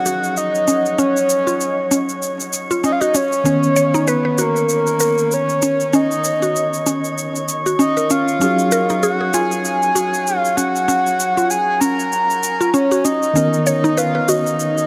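Meditative and mystical, this organic downtempo passage, cut from a longer piece, moves with a gentle swing on the sixteenths over a shifting pair of chords, Ebm11 and Bmaj9/D#. Up front, a breathy, flute-like synth lead carries the melody with a soft attack, sustained tones, vibrato and a hint of sub octave, coloured by analog chorus and delay. Beneath it, a bright, clean tine electric piano plays the accompaniment through a low-pass filter that sweeps across the whole passage. A woody, round, mallet-like synth pluck spins arpeggios with fast, decaying notes, treated with chorus, phaser and delay. A glassy texture of drifting overtones holds a single high note in the background, while an electronic, tape-toned shaker, re-recorded in a small room, enters at 0.1 seconds. A huge ambient reverb with a 7.7-second tail surrounds the mix, giving the piece a floating, spacious sound.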